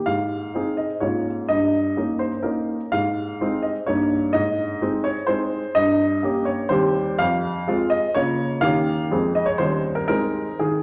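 A classical-period piano sonatina in triple time, this brief excerpt carries a serious, restless mood, its phrasing pulled by a flexible rubato. A lone baby grand piano carries the whole passage from 0.0 to 10.8 seconds, ranging from Eb2 up to F5 with an open, up-front tone. The harmony moves through shifting dominant and minor colours, including a diminished chord and a Cm/Eb before passing through Fm, then returns home to Ab at 10.1 seconds. A wet recital hall reverb with a 1.6-second decay surrounds the instrument, lending the sound a sense of space. The passage is cut from a longer piece and ends on that final Ab.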